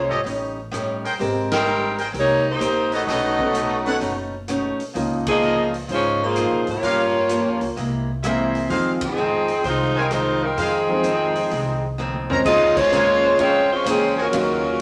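An up-front saxophone section carries the melody in this swinging, brassy big band jazz passage, its vibrato and soft attack giving the line a rounded glow. The tempo is 128 BPM in 4/4 with a swung eighth-note feel in F minor, and the harmony moves through rich extended chords such as Abmaj9, Db69 and Bbm9. A brilliant trumpet section with a smooth top punctuates the tune with stabs. Beneath them, a picked archtop guitar with old strings and a pizzicato upright bass with a woody tone hold down the accompaniment. A warm upright piano joins at 1.2 s, while a very quiet, bright trombone section adds a second line from 10.6 s. The natural big-room drum kit, with its punchy kick, plays a fill at 12.0 s, and the band hits shared accents throughout this section cut from a longer piece, all set in a wet studio reverb.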